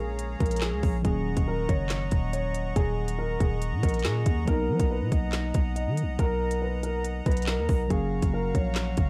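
A half-time drill groove in 4/4 drives this ominous, cold hip hop excerpt, with the electronic drum kit entering at 0.2 s and sitting up front: a hard-clipped kick, a woody snare, crisp hi-hats and handclaps. Beneath it, a growling, buzzy 808-style bass with a fast attack and decaying tail also sits prominently in the mix. A dark, mellow concert grand piano carries the melody with a boxy tone, deep bass and a touch of delay. Muted, intimate synth keys with a chorus effect fill in the accompaniment, and a reedy, sweet accordion with a light tremolo tuning holds sustained chords in a small-room sound. The harmony moves through Bbm7, Ebm7, Bmaj7 and Gbmaj7, and a barely audible riser creeps in at 7.9 s in the dry, dark production.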